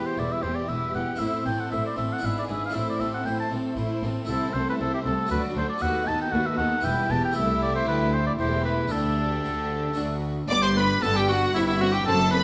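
Brilliant and festive, this excerpt from a baroque-style concerto movement moves at 117 BPM in a straight 3/4, opening on an E minor chord before settling into G major from 4.3 s. A warm oboe with light vibrato and a smooth top carries the melody up front, joined by a rich, expressive violin section that also plays the melody, sitting close yet in the background. Beneath them, a clear, even second violin line sounds distant, while a rich, focused viola section fills the accompaniment alongside a brilliant, plucked, mid-forward harpsichord in French style with octave strings. The bass enters at 0.2 s with a lush, rich cello section and a soft-attacked double bass section. The harmony passes through Am, E7/G#, D and B7/D# toward a Dsus4 resolving to D, arriving on G at 10.5 s as a new section begins, all set in a moderate recital hall reverb.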